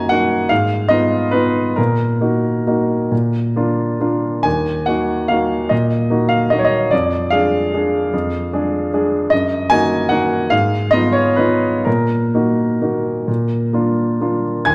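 Classical piano waltz in 3/4 with a wistful, elegant mood, its rubato pulse giving the phrases a breathing quality. A solo grand piano plays throughout, bright and brilliant, open and up front, spanning Eb2 to Ab6 as the minor-key harmony circles through half-diminished and dominant chords. Moderate recital hall reverb frames the playing within a dark production, in this short passage cut from a longer piece.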